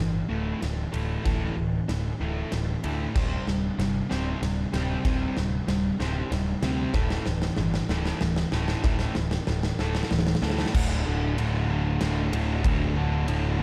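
Post-rock with a cinematic, brooding mood, this excerpt moves at 95 BPM in a straight 3/4 and is cut from a longer piece. An overdriven, double-tracked electric guitar plays a dark, picked riff up front from the very start, moving through chords of A5/D, C5/D and back to A5/D before landing on D5 at 10.7 seconds. Beneath it, a fuzz-laden electric bass sounds bright and punchy in the low register, also up front and running the full 13.6 seconds. A huge arena drum kit enters at 0.6 seconds with a punchy kick, a medium-tuned snare, crash and ride cymbals that ring bright, and a hall-like acoustic presence. The opening stretch is a build-up carried by a drum fill, giving way to a shorter closing section from 10.7 seconds. Studio reverb and a dark, warm production wrap the whole band.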